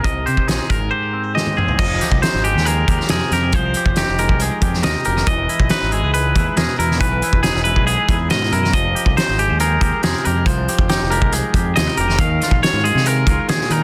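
Set in straight 4/4 at 139 BPM, this wistful, intricate math rock and midwest emo excerpt pairs two clean, twangy picked electric guitars, one comping low and up front while the other spins high arpeggios through tape echo, over a growling, overdriven fingered bass and a loose, roomy indie drum kit with a fat snare, punchy kick and dark cymbals, whose fill at 1.4 seconds opens a longer passage moving through chords like Fm9, Emaj7 and Eb9sus4 in a dry, dense, heavily limited mix.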